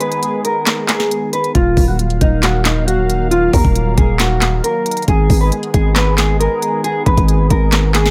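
Dark and brooding, this half-time trap excerpt opens with a clean, fingered electric guitar melody coloured by analog chorus and tape echo, resting over a smooth, detuned sawtooth pad and an up-front electronic kit of knocking kick, sharp snare, crisp hats and handclaps. At 1.6 seconds a growling, buzzy 808-style bass with a fast attack and decaying tail joins the mix as the harmony moves from Abm to Ebmadd9 and back to Abm at 5.1 seconds. The echo-heavy digital ambience lends the whole piece a spacious, shadowy depth.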